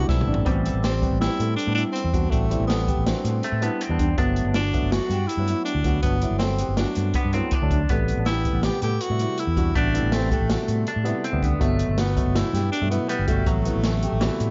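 This progressive instrumental piece opens with saxophone, guitar, keys and bass sounding together, joined at 0.1 seconds by a brief drum fill from an open jazz kit, setting an intricate, driving feel in an uneven 5/4 metre. A clear, close-miked tenor saxophone carries the jazz-style lead with vibrato and a soft attack, its line trailed by dub echo. Beneath it, a bright, compressed semi-hollow electric guitar picks a clean second line through spring reverb. A barky tine electric piano and a boxy concert grand with deep bass sit in the background, the piano spinning arpeggios, both washed in dub echo. An amped, fingered electric bass stands up front, while the drums bring a boomy kick and medium-tuned snare from a small room. The harmony alternates between Am7 and Gmaj7 in an echo-heavy, dark-topped mix, and the clip is cut from a longer piece.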